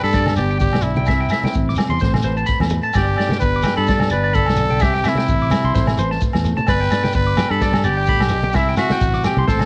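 Recorded at home on cassette in a small room, this sunny, carefree highlife guitar band clip in G major moves at 128 BPM with a lightly swung 16th feel, cycling through G, C and Amadd9. A raspy, growling trumpet carries the melody up front over a dark, thumb-plucked nylon-string guitar and a round, punchy fingered electric bass, while a twangy electric guitar at the edge of break-up picks high arpeggios. A vintage drum kit, with cassette tape colouring on its punchy kick, medium-tuned snare and rolled-off top, enters at 0.1 seconds with a grainy shekere, then ringing agogo bells and damped, low-tuned congas sit in the background from 0.3 seconds.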